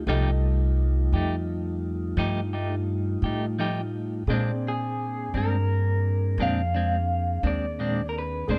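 An unhurried 12/8 blues groove rolls along with a gritty, rollicking mood, anchored by a woody, thumpy pizzicato upright bass up front, a bright, twangy clean electric guitar with tremolo, a soft, flute-like tonewheel organ holding sustained chords through a slow rotary speaker, and a short-sustain baby grand piano accompanying in the background. At 4.7 seconds, shortly after the harmony moves from F9 to Bb9, a slightly broken-up electric guitar through a small old amp, also carrying tremolo, takes the melody up front. The production is dark and dry with little reverb, and this passage is cut from a longer piece.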